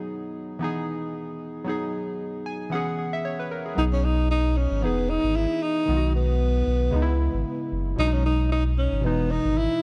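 Breezy, sunny afrobeats at 114 BPM in B major, cut from a longer piece, with a lightly swung 16th feel and chords cycling through B6, Emaj7 and C#m7. Mellow analog keys with a chorus sheen carry the opening alone, adding a fill from 2.2 s, before a breathy, intimate tenor saxophone with vibrato takes the jazz-style lead at 3.8 s over a round, deep sine sub bass. The dry sound carries a worn cassette-tape warble that lends the whole recording a drifting tint.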